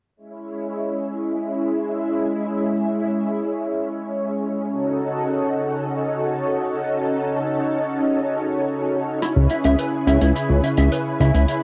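A silky, bright analog string pad with ensemble chorus and cassette tape colouring holds sustained chords over C#m, F#m6/C# and E/C# in this moody, cinematic synthwave excerpt in free time and C# minor, until at 9.2 s a dark, clean electric guitar riff with analog chorus, cassette tape and tape echo enters together with a mid-forward acoustic hi-hat, followed at 9.4 s by a fat, detuned sawtooth bass up front, the whole set in a moderate spring reverb on a home cassette recording.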